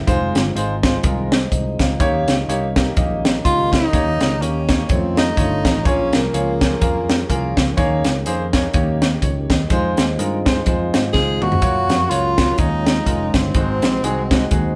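A live-room sound with a wet studio reverb frames this uplifting, hopeful passage of uptempo gospel, cut from a longer piece and carried by a swung eighth-note feel. An airy, polished fusion drum kit sits up front with a high-tuned snare and punchy kick, working hi-hat, snare and toms, and it plays a fill at 11.1 s. Beneath it, a fingered electric bass gives a dark, amped, round low end, while a clear grand piano with a vintage, short-sustain tone supplies the accompaniment. A lightly overdriven tonewheel organ with key click, chorus vibrato and a slow rotary speaker holds sustained chords very quietly, joined by a distant, roomy French horn section whose soft-attack chords sit far back. A breathy tenor saxophone takes the solo melody up front at 3.4 s and returns at 11.1 s, its vibrato, soft attack and scooped notes giving the line a jazz-style voice over the shifting seventh and suspended chords.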